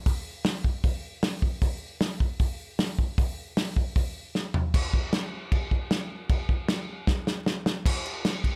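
A straight, driving punk beat in 4/4 carries this rowdy, energetic snippet from a longer piece, played entirely on a loose acoustic drum kit of kick, snare, hi-hat, toms and crash cymbal that enters at 0.1 seconds. The kit sounds close and up front in a small, dry room, with a tight kick, a medium-tuned snare and a rolled-off top end. Fills at 4.3 and 7.1 seconds mark the move into a new section and its close.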